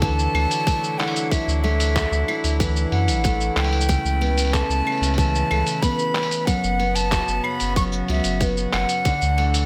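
A straight 4/4 groove at 93 BPM rides on a tight electronic kick, which stops at 9.2 s, and a muffled, pitched-down sampler-style kit of cabasa, claves, handclaps and hi-hat, under a deep, round sine sub bass set up front. In this hopeful, warm folktronica passage in D major, a picked steel-string acoustic guitar plays arpeggios while a distant, reedy string quartet with light vibrato holds sustained chords moving from Dadd9 through Aadd9/C# and F#sus4 back to Dadd9. Above them a breathy, close-miked silver concert flute carries an expressive straight-tone melody, with plate reverb on the flute, strings and guitar.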